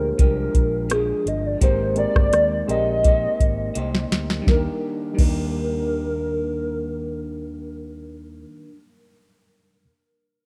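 Dreamy and nostalgic, this short cut from a longer indie pop and bedroom pop piece moves at 84 BPM in Eb major, with a rough home-demo feel and very little reverb. Up front, a warbling synth lead built from detuned square and sawtooth tones carries the melody, its fast attack, vibrato, ensemble chorus and tape echo giving it a mellow, wistful shimmer. Behind it, an electric guitar through a small old amp adds slightly broken-up, compressed picking with subtle chorus and a wobbly pitch drift, while a reedy, worn electric piano sits in the background with fast tremolo and a cassette-tape haze. A round, amped fretless bass anchors the low end, and a soft vintage rhythm box with a deep kick, crisp snare, metallic hats, rim clicks and crash pushes forward with overdriven grit, playing a fill from 3.8 to 4.5 seconds before dropping out at 5.4 seconds. The harmony drifts from Bb13 to Abmaj9 and settles on Ebmaj7 at 4.5 seconds as the second section begins.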